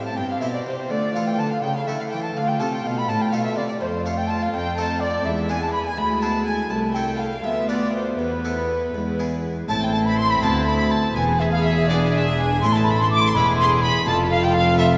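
A dramatic, stormy baroque-style concerto movement opens with flute, strings and harpsichord together. A wooden, pure-toned baroque flute carries the melody with vibrato and a soft attack, joined by a close, reedy violin section that also plays the melody while a second violin section plays a supporting line. A bright, plucked Flemish-style harpsichord with a single set of strings fills in the accompaniment alongside a smooth-topped viola section, and a dark cello section anchors the bass. All the strings share a period-style gut-string sound with light vibrato in most parts. The music moves in a straight 6/8 at 82 dotted-quarter beats per minute, tuned to A4 = 439 Hz. At 9.7 seconds a rich double bass section enters, deepening the low end as the harmony presses through diminished and dominant chords. A wet church reverb surrounds the whole ensemble in this fragment of a longer piece.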